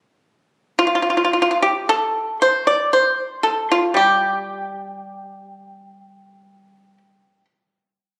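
Heard through a phone in a recital hall with moderate reverb, this contemplative, longing fragment of Chinese traditional solo plucked-string music features an up-front, percussive pipa played with fingerpicks, its dry, acoustic tone moving freely in rubato between G3 and D5 from 0.8 to 7.4 seconds.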